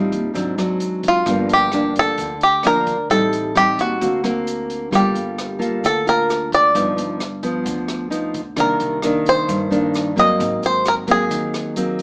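Heard through a small speaker with moderate studio reverb, this smooth, intimate bossa nova in G minor at 132 BPM puts a bright, twangy banjo played with fingerpicks up front on the melody over a full-bodied, fingerpicked nylon-string guitar with fresh strings, while a woody, thumpy pizzicato upright bass with gut strings sits in the background, an open jazz kit adds hi-hat, rim click and a boomy kick, and a grainy, very quiet egg shaker sounds close and dry, with chords such as Ab7#11, Gm9 and Cm9 colouring the harmony.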